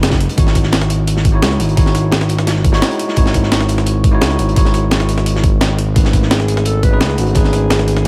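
Liquid drum and bass at 172 BPM with a lush, soulful mood, built on a smooth, up-front synth bass with gliding portamento and vibrato and a bell-like tine electric piano carrying dub echo over Emaj13/G# and Amaj9#11/G# chords. A knocking, overdriven electronic kick sits up front, layered with a gritty, compressed sampler-style breakbeat kit and a dark, saturated second breakbeat kit with high-passed hats, snare and room tucked in the background. At 6.3 seconds a mellow alto saxophone enters with a classical-style solo line touched with vibrato, in a piece cut from a longer track.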